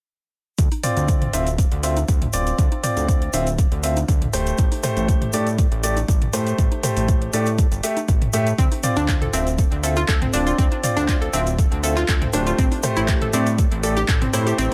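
A dreamy, driving progressive house excerpt at 120 BPM in D minor opens at 0.6 s with a fat, detuned sawtooth bass and a deep, overdriven kick up front, joined by metallic hats and handclaps, a grainy egg shaker and overdriven electronic congas and toms in the background, with the bass, hats, congas and toms all pumping to the sidechain. A clear, polished baby grand piano adds stabs with delay over a Dm7 to Am7 progression. At 8.6 s a round, bright analog pluck enters with chorus and delay, playing arpeggios, all set in a light digital ambience.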